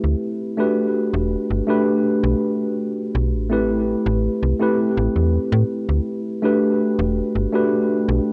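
Nostalgic and hazy, this short vaporwave passage pairs a worn, slightly out-of-tune tine electric piano, clean and up front with subtle chorus and tape echo, against a snappy, metallic, digital slap-like FM bass with a fast, decaying attack, as the two move between Am9 and Em11 chords in a light reverb with a cassette-tape character.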